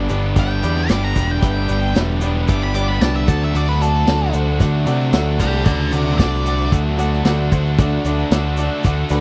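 A straight, driving 4/4 pulse sets up this sunny classic rock clip, with a punchy vintage drum kit up front laying down kick, snare, hi-hat and tambourine alongside a grainy tube shaker tucked in the background. A growling picked electric bass, overdriven and prominent, anchors the low end while three rhythm guitars churn out riffs behind it: a bright cranked stack guitar with overdrive, a double-tracked crunchy overdriven guitar, and a tight distorted guitar. A jangly, metallic tack piano adds percussive accompaniment in the upper register. Over this bed, an octave-fuzz lead guitar with a dark tone takes a solo from 0.4 to 6.7 seconds, reaching as high as D6. The harmony moves from G to D, and the whole recording has a dry, close 1970s studio sound with little reverb, cut from a longer piece.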